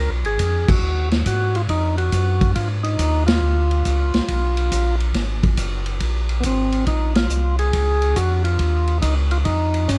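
A soulful, swinging soul jazz organ trio opens with two tonewheel organs: a clean, percussive melody voice with key click and a slow rotary speaker, over a piping, scooped organ bass with light overdrive and chorus vibrato. At 0.2 seconds a vintage acoustic kit joins up front at 139 BPM in a swung 4/4, with dark cymbals, a medium-tuned snare and a punchy kick, and the band hits accents together at 0.6, 3.2 and 7.1 seconds. The dry, close sound carries the harmony from a rootless Dbadd9 through Bbm, Ab9 and Bbm7 to Eb9 in this short cut from a longer piece.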